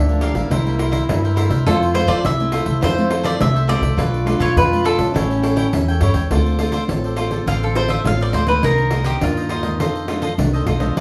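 A picked cavaquinho carries the melody up front, its crisp tone doubled by a slapback echo, in this lively, yearning samba and choro at 103 BPM in 4/4 with a straight feel. Beneath it, a breathy trombone plays a mellow, whispered second line with light vibrato and a soft attack, in an intimate jazz style, until 6.0 s. A fingerpicked nylon-string guitar gives classical accompaniment with audible finger squeak, while a second cavaquinho adds a bright, crisp picked accompaniment and a jingly pandeiro is struck close with hard hands. The pizzicato upright bass sits up front with a woody, thumpy, warm sound from steel strings. The music opens in A minor over chords such as Gm7, C7 and Fmaj7, then at 6.3 s it shifts to D minor on Dm7 as the cavaquinho takes a solo, with its melody ending at 9.8 s. A moderate studio reverb gives the room a short air in this fragment cut from a longer piece.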